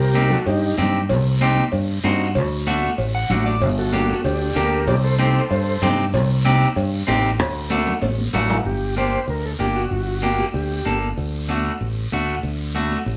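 Cumbia in a danceable, passionate mood, this short cut from a longer piece moves at a brisk 190 BPM in G harmonic minor, with a band playing live together in one room under moderate studio reverb. A growly, punchy fingered electric bass sits up front from the first moment, alongside a dark, clean picked electric guitar that carries the accompaniment and slips in a brief fill at 3.0 seconds. A vintage, reedy combo organ, overdriven and drenched in heavy vibrato, delivers the melody in short phrases, returning at 3.8 and 8.7 seconds. In the background, bright, high-tuned congas struck with hard hands keep going throughout, while ringing, saturated cowbell and timbales push the groove until a drum fill leads into the second section at 8.7 seconds, after which they drop out. A raspy guiro, distant as if in a large room, scrapes along quietly beneath it all, as the chords cycle through Cm, D and Gm.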